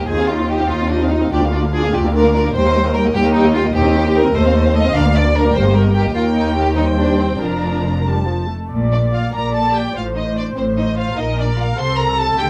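Veiled in light reverb, this spirited, graceful passage from a quick classical-period movement for muted string orchestra moves in a rubato 6/8 at 99 BPM (dotted quarters), turning from Eb major to Bb major at 3.7 s, with a distant, dark first violin melody sitting above an up-front second violin line, close, soft-attacked violas filling the accompaniment, and cellos and smooth-topped double basses bowing the bass with vibrato from 0.1 s.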